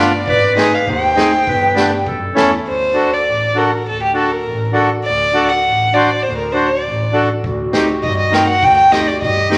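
This klezmer excerpt at 100 BPM in 2/4 carries a festive yet soulful mood in D phrygian dominant, led by a dark, intimate bowed violin with light vibrato and an airy bow, up front and close. A reedy, mid-forward accordion accompanies throughout, a clear classical-style clarinet adds a second line, and a rich, focused bowed double bass with vibrato holds the low end. An acoustic street-band drum kit with a boomy kick and medium-tuned snare joins the bass at 0.3 s, then drops out with the clarinet before both return at 7.4 s, all set in a large, reverberant studio space.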